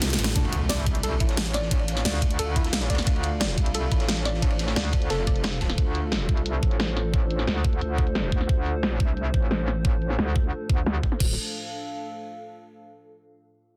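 Aggressive and mechanical, this dark technical drum and bass cut runs at 177 BPM in D minor, held on a single D minor chord, and it is lifted from a longer piece. A drum fill opens it, and at 0.4 seconds a knocking, layered electronic kick lands up front alongside a metallic wobble bass, its FM tone saturated with overdrive, compressed and sidechain pumping. A produced dubstep kit with a huge snare, hats, ride and crash drives the groove up front with low-pass filtering on its hats, cymbals and snare, while a gritty, rolled-off breakbeat kit with dark cymbals and a high-tuned snare sits in the background until 5.7 seconds. Underneath, a deep, moody pad of detuned sawtooth unison and sub octave holds sustained chords in reverb, joined at 1.5 seconds by a warbly, nostalgic lo-fi pad of square and triangle waves. A soft, round pluck spins delayed arpeggios through the opening stretch, an electronic impact hits in the background, and a filter sweep runs across the drums in a dense, heavily limited modern master.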